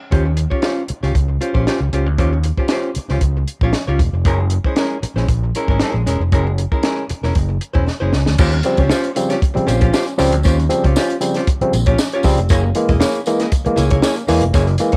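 A punchy, overdriven fingered electric bass sits up front in this energetic funk excerpt from a home cassette recording, joined by a dry compact cocktail drum kit with a high-tuned snare and dark cymbals and a clean, hollow-body archtop guitar accompanying on Eb13 and Gb9 chords, until a drum fill at 7.9 seconds opens a second section where a barky tine electric piano adds stabs through a combo amp and a jingly tambourine enters in the background at 8.4 seconds.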